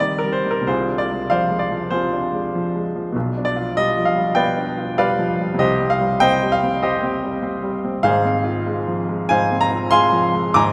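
Brooding and stormy, this romantic character piece for solo piano moves in C minor at 97 BPM, its 4/4 pulse pushed and pulled by rubato across an 11-second slice of a longer work. A clear, polished baby grand sits up front with a short sustain, ranging from Ab1 to D6 as the harmony passes from Cm through Dm7b5/C and G7/B, returns to Cm, and reaches Fm/Ab at 8.0 seconds. A wet cathedral reverb surrounds the instrument, giving the church or concert hall a long, resonant tail.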